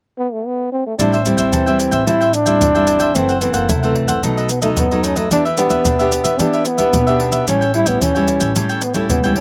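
A present, up-front trombone with light vibrato and scooped notes carries the jazz-style melody from 0.2 s, joined at 1.0 s by crisp, picked cavaquinho and fingerpicked classical nylon-string guitar with audible finger squeak (both touched with slapback echo), a woody, thumpy pizzicato upright bass, and close, dry maracas, tight surdo and pandeiro played with soft hands, in a lively, bittersweet samba and choro in A minor at 111 BPM that moves through Am7, F#m7b5, B7, Em7 and A7, recorded outdoors with little reverb and cut from a longer piece.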